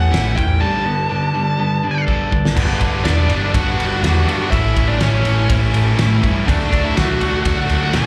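A high-gain lead guitar carries the melody from start to finish in this short cut from a quiet-loud alternative rock piece, its distorted, picked tone sitting over a dark, round, overdriven bass that drives the low end. The mood is restless and anthemic at 123 BPM in a straight 4/4, with a loose indie drum kit offering a fat snare, punchy kick and dark cymbals in a pumping room sound. For the opening stretch a bright, clean electric guitar picks arpeggios over Aadd9 and Gadd9 while a distorted guitar plays a riff in the background, all carrying a slapback echo. A drum fill at 2.1 s leads into the second section at 2.6 s, where the clean guitar stops and a biting overdriven guitar joins with its own background riff as the chords move through G, A and D. The whole performance is heard as a live gig through a club PA, with light reverb and small room ambience.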